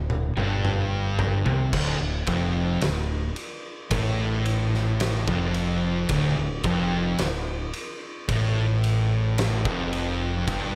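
A crunchy, bright, double-tracked overdriven guitar opens this ominous, sludgy stoner and doom metal excerpt alongside two thick fuzz guitars, one warm and one darker and set back, and a growling, overdriven fingered bass, while an oversized low-tuned acoustic drum kit with a fat snare, punchy kick and gritty, saturated tone plays a fill until 1.7 s, when the crunchy guitar stops and the heavy riff settles onto its first chord in a lightly reverberant studio room.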